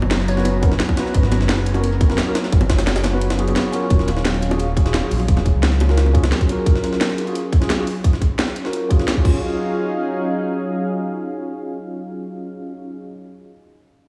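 An overdriven, tight electronic kick sits up front in this rolling, lush liquid drum and bass cut at 174 BPM in Eb minor, dropping out briefly at 3.2 s before returning until 9.3 s. It is layered with an overdriven garage kit with a cracking snare and, in the background, a gritty, pitched-up jungle sampler-style kit in a large room, plus very quiet, low-tuned acoustic bongos. A dark, smooth gliding sawtooth bass with vibrato holds the low end until 6.3 s, while a thick, detuned unison pad with chorus and sidechain pumping sustains Abm11 and then Ebm11 chords. A clean tine electric piano with diffuse ambient delay takes a filter sweep from 3.9 s, a glassy wavetable pluck flickers in briefly, and the whole mix is dreamy and soaked in hall reverb.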